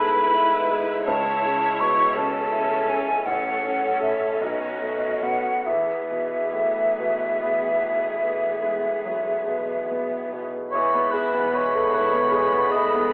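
A bright, brilliant baby grand piano carries the melody up front with long sustain in this brooding, passionate romantic movement for piano and orchestra, a fragment of a longer piece in E major, moving in a rubato 12/8 at roughly 46-56 BPM in dotted quarters. A pure, hollow concert flute sings a tongued second line until 10.3 s over a focused, distant viola section, a smooth, even cello section in the background, and an intense double bass section entering at 1.0 s. At 10.7 s a mellow, roomy solo oboe joins alongside a dark, lush violin section high on the melody and a soft-attack violin section in the background, all heard through a wet recital hall reverb with a telephone-like sound.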